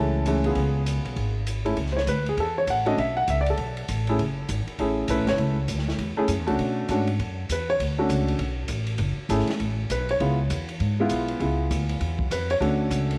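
A worn, deep-voiced grand piano with tape echo and a woody, up-front pizzicato upright bass open this moody, late-night jazz piano trio fragment in F# minor at a swinging 199 BPM, joined at 0.3 seconds by a dark, smooth drum kit with hi-hat, ride, snare and boomy kick, before the piano takes a solo from 1.8 seconds over chords such as F#m9, Bm9 and C#7#9 in a light reverb.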